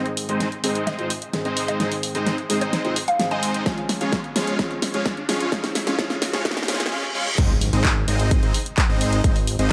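Detuned supersaw chords with lush chorus lead this triumphant, uplifting festival progressive house excerpt, rising through a filter sweep over a felt-muted upright piano, a hollow square pluck melody, a big-room drum kit with a huge snare, an electronic kick from 3.7 s, and quiet risers and a reverse cymbal, before a fat, wave-folded analog bass arrives with the impact at the drop at 7.4 s, all set in a lush hall reverb.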